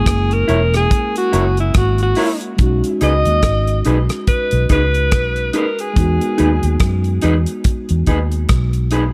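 This lovers rock reggae piece moves at an unhurried 71 BPM in 4/4 with a swung sixteenth-note feel, set in B major and tuned a touch low to A4 = 438 Hz, with a smooth, romantic mood. A clear alto saxophone leads from the opening with a vintage pop-style solo, its vibrato and scooped notes placed up front and trailed by tape echo until it drops out at 7.1 seconds. Beneath it, a mellow tine electric piano heard through built-in speakers plays clean, warm accompaniment, while a dark, round, foam-muted fingered bass sits forward and punchy. A damped 70s acoustic kit with a tight kick, hi-hat and rim click comes in just after the start, dry and near, and an electric guitar through a small old amp adds picked, slightly broken-up stabs with a subtle chorus from 0.5 seconds. The harmony moves from F#7 to B6 at 2.6 seconds and then to Emaj7, set in a small room ambience in this short cut from a longer piece.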